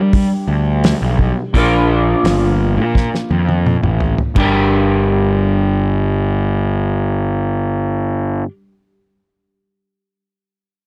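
A straight 4/4 pulse at 85 BPM drives this dark, trippy psychedelic rock passage in G minor, cut from a longer piece. A cloth-damped acoustic drum kit sets the groove with a fat snare, tight kick, hi-hat, toms and shadowy crash cymbals, its dry, thuddy sound rolled off at the top. The drums play a fill from 3.0 seconds and drop out at 4.5 seconds, leaving the other two parts to carry on. Up front, a picked electric bass growls with overdriven fuzz, punchy and warm, moving between G1 and G3. Above it, an electric guitar through a small old amp plays a slightly broken-up, picked riff, its murky tone colored by a flanger. The harmony moves from G minor to B-flat and back to G minor, all set in a studio room with light reverb.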